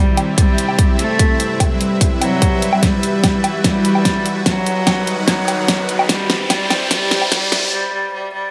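A moderate plate reverb and a high-pass filter shape this short, menacing cut from a longer heavy wobble dubstep piece, moving in a half-time feel at 147 BPM in 4/4. Up front, a single clear cello carries the melody between F#3 and A3 with light vibrato and an airy, earthy bow, passing through a low-pass filter and dub echo while a filter sweep runs across the whole build-up. Beneath it, a lush, bright supersaw pad holds sustained chords and a deep, moody ambient pad adds dark, chorused texture in the background, both pumping against the sidechain. The drum kit brings a huge snare, bright hats and woodblock with a tape-warm character, and an overdriven, punchy electronic kick sits up front beside it, with a drum fill starting at 2.8 seconds and a riser entering at 4.4 seconds. The harmony moves from C through Cmaj7#11, Emadd9 and B/D# back to C before everything but the cello drops out at 7.7 seconds for a brief break.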